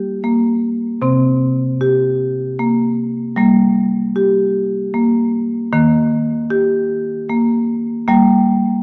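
A dark, softly lit production places a solo marimba up front in a wet, spacious reverb with a hint of small-room ambience, its medium-mallet tone warm and mid-forward. This short passage from a longer piece is a gentle, meditative world-music setting in G minor, moving at 76 BPM in a lilting 3/4 with a light swing. The marimba stays between C3 and G4, circling through G minor, C5 and E-flat before settling back on G minor at 8.1 seconds.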